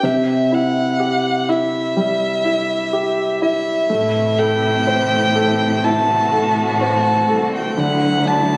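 A dark, smooth solo violin carries the tender, emotional melody up front in this short pop excerpt, with a clear, intimate concert grand piano accompanying it and its action noise audible beneath a long, deep-bassed sustain. At 3.9 seconds a lush, distant string section enters with sustained chords, portamento and vibrato, while a veiled, muted cello section plays the bass line as the harmony moves from C to Am and then to Dadd9. The recital hall reverb is moderate, and the phone recording made in the room is compressed.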